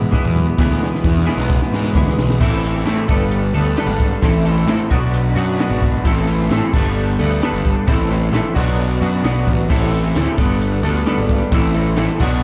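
Cool and restless, this short indie rock clip from a longer piece moves at a steady, straight 4/4 stride and sounds like a live club gig heard through the venue's PA. Two guitars carry the riff throughout: one through a small old amp, dark, lo-fi and slightly broken-up with tremolo, and a twelve-string that rings bright, clean and twangy through analog chorus. Underneath, an overdriven fuzz bass sits up front with a warm, amped tone, while a compact cocktail kit with a punchy kick, high-tuned snare and dark cymbals plays a fill from 0.6 to 2.4 seconds. At that point the chords settle into a loop built around Am, Gadd9 and Bm, and a very quiet, mellow organ-string ensemble enters with soft, phased sustained chords. A jingly tambourine joins at 2.9 seconds, close and dry but tucked in the background.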